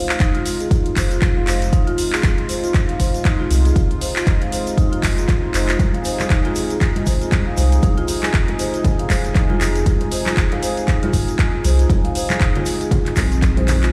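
Afro house with a warm, driving feel, where an up-front deep electronic kick and a round, pumping sine sub bass anchor a detuned sawtooth pad with chorus, tape-echoed marimba arpeggios, a drum kit of handclaps and metallic hi-hats, a grainy egg shaker, and ringing congas that join in the background at 5.8 s, the whole mix heard through a big sound system in a bare stone room.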